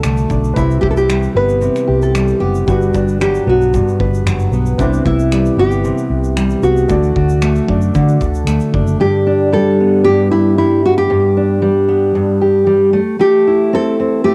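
A straight 4/4 pulse at 114 BPM drives this carefree, heartfelt acoustic pop piece in G major, cut from a longer track. A loose indie drum kit sits distant and roomy in a studio room, with finger snaps, a tight kick drum and shaker colored by cassette tape. Up front, a jumbo steel-string acoustic guitar fingerpicks a full-bodied accompaniment, while a vintage muted fingered electric bass adds a dark, round, punchy, foam-muted tone. A deep classical nylon-string guitar carries the fingerpicked melody with audible finger squeak and its own cassette tape grain, and a clear, woody, slightly detuned upright piano stays in the background. The chords move through D, Cmaj7 and Gmaj7 before piano, bass and drums stop at 9.0 seconds, leaving the two guitars to carry G and Am7 until 14.3 seconds, all under light reverb with the intimate feel of a home recording on cassette.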